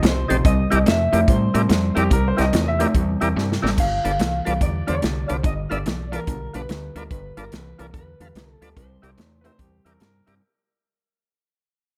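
A swung 4/4 shuffle at 144 BPM drives this gritty, soulful electric blues excerpt in C major, moving from C7 to G7 and back to C7 while the whole passage fades out. An up-front, punchy acoustic drum kit with a medium-tuned snare, a round, dark fingered bass and a crunchy, bright overdriven guitar riff carry the groove, with a drum fill at 3.4 seconds. Above them, a slightly broken-up, compressed lead guitar plays the melody through harmonic tremolo, a smooth tonewheel organ turns through a slow rotary speaker, and a brilliant, woody upright piano adds short phrases at 2.0 and 9.4 seconds, all set in light studio reverb.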